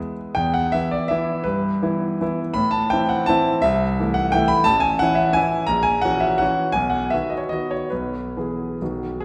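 A clear grand piano opens on a lone E5 at 0.4 seconds, then moves through Em/G and Am into a graceful, proud romantic triple-time dance in E minor with dotted rhythms, taken with rubato somewhere between 127 and 185 BPM. The solo piano sits up front with an intimate, natural character, spanning A1 to E6, its action noise audible beneath the notes. A wet hall reverb with a 1.8-second tail surrounds the playing as the harmony passes through F#7/A# and B toward E/B, and this short passage from a longer piece closes on B at 8.8 seconds.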